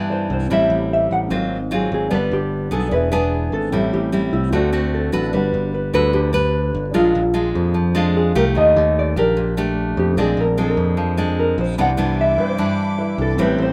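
Light reverb gives this bossa nova excerpt a relaxed, sophisticated air, set in a straight 4/4 feel. A bright, full-bodied nylon-string guitar sits up front with fingerpicked accompaniment and audible finger squeak, beside a direct, picked electric bass that anchors the low end. An intimate concert grand piano stays in the background, its deep bass and faint action noise adding a warm, natural cushion. From 0.1 s a hollow-body jazz guitar carries the melody with a dark, clean, fingered tone. The harmony moves through rich chords such as Am7, Ab13 and Ebmaj9#11 across two statements of the same section. At 11.8 s, as the progression returns to Cmaj9, a dark chamber string section enters with sustained bowed chords, its reedy, nasal gut-string tone smooth on top.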